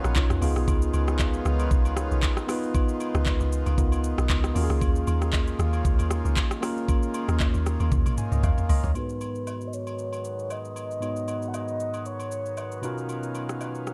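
Amapiano at 116 BPM in G# dorian with a deep, soulful swing, built on a knocking, up-front electronic drum kit with smooth hats, handclaps, rim clicks, shaker and toms, faint vintage agogo bells and woodblock, a clean tine electric piano, and a reedy, nasal hand-pumped harmonium breathing under sidechain pumping. A dark, round log drum bass knocks until 8.9 s, through a drum fill that starts at 7.9 s, and at 9.0 s a filter sweep begins as a soft, breathy flute-like synth lead enters with vibrato, chorus, phaser and slapback echo.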